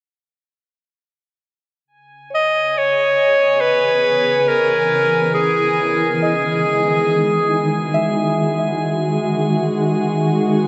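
Drenched in a huge, wet reverb with a dark, muted top end, this melancholic, reflective ambient excerpt in C# dorian moves at a slow 69 BPM in 4/4 over C#m7 and Emaj9 chords. A bright, classical-style clarinet carries the solo melody up front from 2.3 s to 7.9 s through a diffuse delay, while a glassy, drifting harmonics texture fades out and a soft, pure FM synth bell fades in with gentle, decaying arpeggios in the background. From 3.3 s a shimmering, ethereal pad, detuned and granular with an octave-up sheen, fades in with sustained chords.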